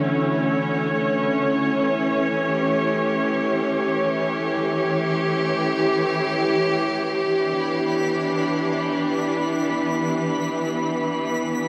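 A muted chamber string section sits up front in this serene, spacious ambient passage taken from a longer piece, its veiled, bowed chords carrying vibrato and a shimmer reverb as they move from Dmaj7 to A7 and settle on Em7 at 7.1 seconds. Beneath them, a very quiet analog drone of evolving sawtooth and pulse-wave tones, colored by chorus and phaser, fades out over the first 7.1 seconds. At 7.6 seconds a twinkling granular texture enters high above, its sparkling FM tones given an octave-up shimmer, while a huge, wet reverb hangs over the whole space.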